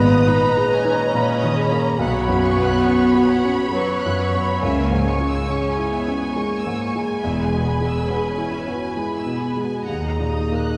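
A mellow alto flute carries a longing melody over a felt-muted upright piano, whose soft, intimate tone comes with audible action noise, as violins, violas, cellos and double basses all play together from the opening second of this emotional, cinematic orchestral cue in G# minor. Moving at a rubato 69 BPM in 3/4, the harmony passes from G#madd9 through Bsus2, C#m and E to D#m, with a violin section high above holding a second line and a very quiet cello section, recorded close, blending with the double basses beneath. A scoring-stage reverb places the whole ensemble further back in the room, giving this moving fragment of a longer piece a soft, distant glow.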